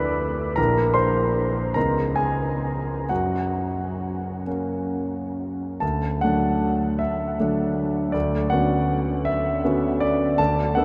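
A solo concert grand piano opens this short fragment of impressionist classical music, its intimate, up-front tone carrying audible action noise, deep bass and long sustain. The mood is serene and hazy, moving slowly in a rubato 6/8 at roughly 42-56 BPM counted in dotted quarters. Harmonies drift from Dsus2 through A# and C#sus2 to F#, settling the opening in F# major. At 5.8 s the music shifts to D major, with a Dadd9 chord followed by Bmadd9/D at 8.1 s. A huge ambient reverb places the instrument in a vast, echoing space, and its long tail blurs the chords into a misty wash until the fragment ends at 10.8 s.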